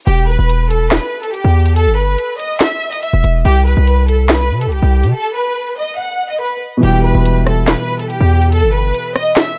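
This cold, ominous drill excerpt rides a half-time 4/4 groove at 142 BPM in E harmonic minor, with an electronic drum kit of sharp snare, rim clicks, handclaps and tape-toned hi-hats sitting up front from 0.1 seconds. A hard-hitting 808-style bass, punchy and heavy with a sine body, a noise layer and a fast, decaying attack, runs alongside from E1 up to C3 and is the loudest part in the mix. Above it, a rich studio violin section carries the bowed melody between G4 and F#5 with vibrato and a focused yet distant ensemble tone, softened by a low-pass filter. The harmony moves from E5 to C5 before a break at 5.1 seconds, and at 6.8 seconds a dark, mellow grand piano with a smooth vintage character enters on Em, also filtered, ranging from B2 to G4. The whole production has a dark, small-room ambience that deepens the menacing atmosphere.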